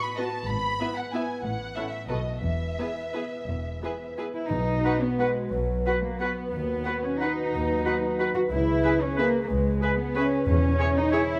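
A rubato waltz in three, this festive, elegant orchestral ballroom piece sets a veiled, muted violin melody over ringing harp arpeggios, a background second violin line, muted violas, mellow French horn chords, an up-front cello section and bowed double basses, while a clear solo oboe and an airy, distant flute ensemble add second lines from 4.8 s and timpani sound at 4.5 s and 10.5 s, within a moderate scoring-stage reverb.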